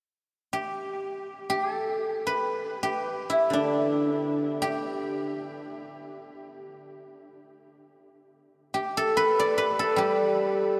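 Serene and flowing, this short passage of Chinese traditional music is cut from a longer piece and given entirely to a solo guzheng. The zither enters at 0.5 seconds and carries the whole recording through 10.8 seconds, moving across a range from D3 to D5. Played with fingerpicks, its acoustic tone is bright and silvery, each plucked string ringing out up front in the mix, with an analog delay adding echoes to its notes. The music opens with one section that gives way to a second at 8.3 seconds. A huge, wet ambient reverb soaks the sound, lending the whole piece a dreamy atmosphere.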